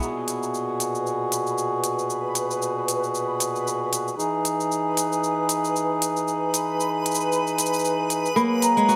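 An electronic cabasa and hi-hat pattern, crisp and overdriven and set up front, carries a lightly swung 4/4 at 115 BPM through this autumnal, wistful folktronica excerpt in G# minor. A reedy, round accordion holds sustained chords throughout, moving from G#m9 to Emaj7 and back, its tone shaped by a low-pass filter sweep. A bright, fingerpicked kora rings out in delayed arpeggios at the opening, falls silent, then returns near the close at 8.4 seconds. From 0.9 seconds a reversed, detuned granular texture swells in softly on a single high note, dreamy and sustained with a long release. At 8.4 seconds a hollow wooden flute enters with a pure, distant, vibrato-touched melody carried on delay. The whole excerpt, cut from a longer work, sits in a moderate echo-chamber reverb.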